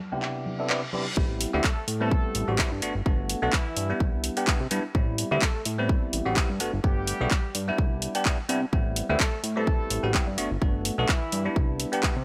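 A bell-like tine electric piano opens this nostalgic, sensual stretch of filtered disco house at 127 BPM in A dorian alongside ringing, close tube shaker and congas sitting in the background, the piano pumping through a phaser and low-pass filter over Cmaj9, Am9 and Gmaj9 chords, while a house kit with handclaps and hi-hat comes in. A reverse cymbal rises into the drop at 1.2 seconds, where a punchy, tape-warm electronic kick lands up front and a fat, detuned, wave-folded analog bass pumps under a low-pass filter. From 1.6 seconds a mellow, distant horn section carries the melody in octave doubling with vibrato and dub echo, its roomy sound set against the otherwise dry mix.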